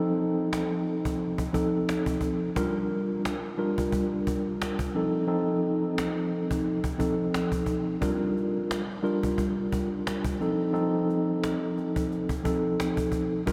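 A mellow tine electric piano carries this reflective, moody boom-bap hip-hop excerpt, sitting up front with a clean tone colored by cassette tape and filtering that trims its highs and lows. It plays accompaniment from the opening moment, moving between F7 and Gm7 chords within a range from F3 to Bb4 at a relaxed 88 BPM in 4/4, with a gentle 16th-note swing. A cajon enters at 0.5 seconds, snappy and acoustic with snares, played with soft hands in a live room and sitting well beneath the piano. The whole mix is soaked in a huge, wet ambient reverb with an 8.5-second decay, giving the short fragment a dreamy atmosphere. Both parts continue through to the cut at 13.5 seconds.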